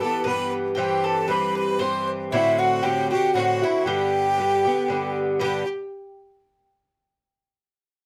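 Up front, a metallic, double-strung Irish bouzouki picks the accompaniment in this bright, cheerful Celtic waltz at 116 BPM in 3/4, lightly swung in G major and moving through Em, C, D7 and G. Above it, a hollow, airy wooden flute carries the tongued melody with vibrato in plate reverb, while a clear, biting bowed fiddle and a woody mandolin set in the background share a second line beneath. The short cut is closely miked in a moderate studio room; the bouzouki stops at 5.6 seconds and the other three parts at 5.7 seconds.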